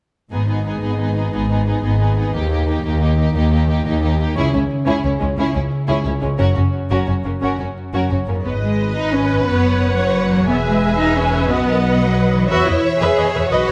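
A lush, expressive cello section carries the bass beneath focused, vibrato-rich violins on the melody, soft-attack violins on a second line and a viola section sliding with portamento in this swashbuckling, heroic adventure film cue in a straight 6/8, while a dark, woody double bass section sits distant underneath and a very quiet concert harp rings out fingerpicked arpeggios, all building from 0.3 s to 8.5 s before the phrase opens onto fresh harmony in a moderately reverberant scoring-stage space.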